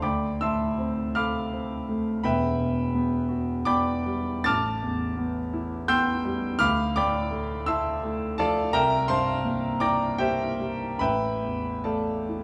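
The rhythm moves in an uneven 3/4 at around 82 BPM, with rubato. This is a brief excerpt of impressionist classical solo piano in D dorian, tuned to A4 = 439 Hz, with a mysterious, wistful mood. A concert grand plays alone for the full 12.4 seconds, spanning E1 to A6. Its tone is clear and natural, with a deep bass and long sustain, and it sits up front in the mix. The harmony drifts through Dm7, Em9, Am9, Dmadd9 and C9 before arriving at A7sus4 at 11.0 seconds. A moderate recital hall reverb of about 1.6 seconds and a touch of small room ambience give the sound a sense of space.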